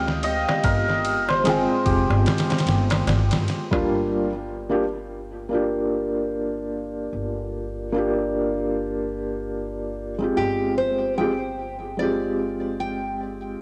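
A hammered, shimmering santur carries the melody from the opening, heard through vintage 12-bit sampler grit, cassette tape and tape echo, over a soft, felt-muted upright piano with audible action noise and tremolo, and a woody, dark pizzicato upright bass. This dark, melancholic trip hop fragment moves at 74 BPM in 4/4 with a swung sixteenth feel in G phrygian, drifting from Fmadd9 to Gm7 and then to Fmadd9/G. A compressed, pitched-down sampler-style drum kit sits up front with a thumpy kick, medium-tuned snare and ride cymbal, joined by a small, high clay-shell darbuka in the background, and both fall away at 3.9 seconds. The santur stops at 5.0 seconds, leaving the intimate, mellow piano and the bass to hold the harmony. At 10.4 seconds a bright, full-bodied fingerpicked nylon-string guitar enters up front with arpeggios, finger squeak and the same grit, tape and echo treatment. Light reverb and small room ambience give the whole a homemade cassette character.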